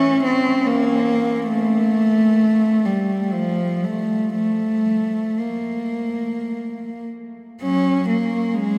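A lone bowed cello opens this brief, lyrical classical fragment, played close and up front with a soft attack, airy sul tasto tone and light vibrato, moving between E3 and Db4 in a free, rubato 3/4 that drifts between 43 and 72 BPM, tuned to A4 = 439 Hz. The mood is nostalgic and intimate, and a new passage begins at 7.6 s before the cut ends at 8.8 s. The single player sits in a vast, echoing cathedral space whose wet reverb, with a 6.8 s decay, lets each phrase hang in the air.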